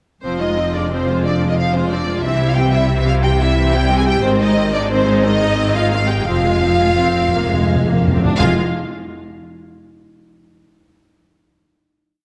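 Adventurous and swashbuckling, this short, complete cinematic cue is a heroic film-score theme in 12/8 at roughly 110-121 BPM, set in F dorian. Two lush, warm violin sections carry the melody and a second line with expressive vibrato and soft attacks, while a rich viola section supplies an intense accompaniment with a rocking two-note figure and sustained chords. Beneath them, cellos hold a smooth, even sustained bass that the double basses double, and a clear French horn section sustains chords with light vibrato in a classical style. The harmony moves from F minor through C and A-flat back to F minor, and the tempo broadens from 4.9 seconds as soft-mallet timpani with a round tone enter at 6.3 seconds for a fill. The theme settles onto a final chord at 8.4 seconds, ringing into a moderate scoring-stage reverb.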